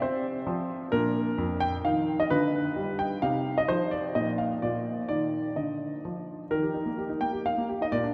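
A clear, natural concert grand piano with a deep bass sits up front and plays alone through this brief, graceful and cheerful classical-period sonatina passage in Eb major, moving at 130 BPM in a straight 3/4 through chords such as Bb, G7/D and Cm before settling on Eb at 6.5 seconds, all bathed in the long, wet reverb of a vast, echoing cathedral.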